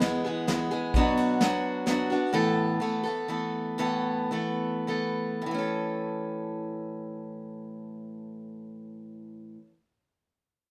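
In a straight three-four lilt, this short fragment of pastoral, hopeful acoustic folk opens with a soft brush kit of punchy kick, ride cymbal and medium-tuned snare, natural in a small room, which drops out at 2.0 seconds. A bright, up-front picked archtop guitar carries the accompaniment throughout, finger squeaks audible as it moves from E and Bm to Asus2 and eases to a slower pace before settling on A at 5.5 seconds. A light reverb surrounds the playing.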